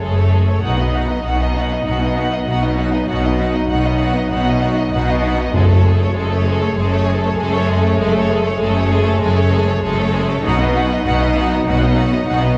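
In a straight 4/4 at 98 BPM, this epic, relentless orchestral film cue moves between F#madd9 and B as a bowed violin section carries a lush, vibrato-rich melody over a more intense second violin line and smooth violas sitting in the background. Mellow French horns hold sustained chords while clear cellos and expressive double basses, sliding with portamento, anchor the bass. Round, soft-mallet timpani enter at 5.5 s and sound until 6.4 s, dry and close against the strings, which sound distant in a reverberant recital hall.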